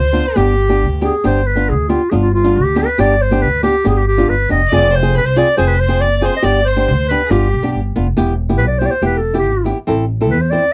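Festive yet soulful, this dry, close 1970s-style klezmer recording, cut from a longer piece, sets a warm, classical-style clarinet melody up front over a woody, growly pizzicato upright bass and a fingerpicked flamenco guitar with audible finger squeak, while a bright violin with light vibrato and an airy bow adds a second line at the start and again from 4.7 to 7.7 seconds.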